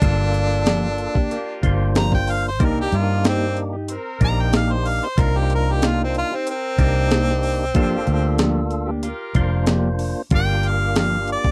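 Clear, up-front harmonica carries this brooding soul-blues excerpt, its close-miked solo running the full 11.5 seconds with light vibrato, scooped notes and an overdriven bite. Beneath it, a gritty, pitched-up breakbeat kit drives a straight 4/4 groove, with a thumpy kick, medium-tuned snare and hi-hat, all compressed and overdriven, while a dark, foam-muted fingered bass sits round and punchy near the front. A fat, percussive tonewheel organ fills the middle with third-harmonic percussion and a slow rotary speaker, and a mellow, clean electric guitar joins at 0.7 seconds with fingered stabs. A distant, roomy horn section holds sustained chords in the background. The harmony moves from Gm7 to Cm7 and back to Gm7 at 7.8 seconds, and the dry, close 1970s-style studio sound keeps the soulful mood intimate.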